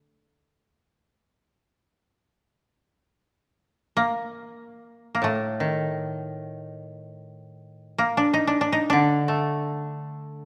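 Japanese traditional chamber music in free time, austere and calm, carried by two kotos played with fingerpicks. The melody koto sounds from the start in a mellow, woody voice up front, and a second koto joins at 5.2 seconds with a lower accompaniment that continues to the close of this short cut from a longer piece. The dry plucked tone sits within a moderate concert hall reverb.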